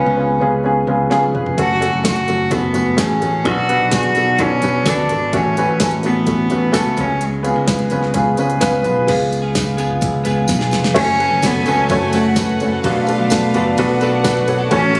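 Piano-driven pop in F# harmonic minor at 128 BPM, dramatic and earnest, cut from a longer piece, where a dark, woody upright piano with audible action noise and a soft-attacked, floating cello carry the opening over a growly, punchy picked electric bass, joined at 1.1 seconds by a produced pop drum kit with a knocking kick, fat snare and crisp hats, plus a jingly tambourine in the background. A compressed, clean electric guitar riff with analog chorus arrives at 9.1 seconds, and at 11.0 seconds a lush violin section with vibrato and tape echo adds a second line above as the chords move from F#m to Bm7. The sound is lightly reverberant, with the feel of a phone recording in the room.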